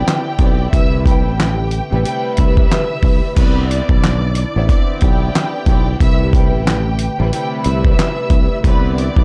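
Boom-bap hip-hop with a soulful, nostalgic mood, this short cut from a longer piece rides a swung 4/4 groove over a single Am9 chord. A dusty, sampler-style drum kit sits up front, its gritty, compressed sound built from a thumpy kick, a medium-tuned snare, hi-hat, handclaps and crash cymbal, re-recorded in a small room. A growly fretless electric bass joins at 0.4 seconds, bright, direct and sustaining in its low register. Above it, a lush symphonic string section gives rich, bowed accompaniment with a cassette-tape colour, while a distant violin section carries the melody high, clear and smooth with vibrato and a digital delay. A hollow, flute-like pad with slow attack and chorus hums very quietly underneath, and the whole production stays dark and warm, with little reverb.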